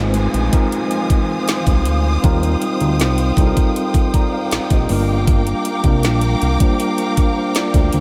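A trap drum kit, up front and entering at 0.1 seconds, drives this moody, longing contemporary R&B passage at 79 BPM in a straight 4/4, its knocking kick, woody snare and metallic hats carrying the character of an electronic kit re-recorded in a small room. Beneath it, a fat analog bass sits low and thick, blending detuned sawtooth, square and sine tones with wave-folding, saturation and a filter sweep for a sustained, fast-attack foundation. A mellow tine electric piano, clean and played through its built-in speakers, carries the accompaniment over Ab6, Eb69 and Gm7 chords. A distant, lush studio string section holds bowed, expressive chords with vibrato, pumping against a sidechain. An electronic downlifter drifts in the background until 5.3 seconds. This short section, cut from a longer piece, is soaked in a cathedral reverb that gives it a dreamy sense of space.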